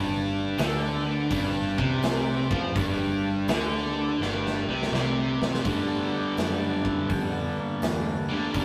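A swung 83 BPM groove in 4/4 drives this swaggering, raunchy blues rock power trio cut with a southern rock lean, sitting on G major and cut from a longer piece. A bright, double-tracked distorted electric guitar riff sits up front over a dark, foam-muted fingered bass and a thick, gritty overdriven tonewheel organ holding sustained chords through a slow rotary speaker, while a big rock drum kit with punchy kick and medium-tuned snare enters at 0.6 seconds. A drum fill from 4.2 seconds leads into an organ solo at 5.6 seconds, all captured in a rough rehearsal-room sound with tube saturation and a short, wet booth ambience.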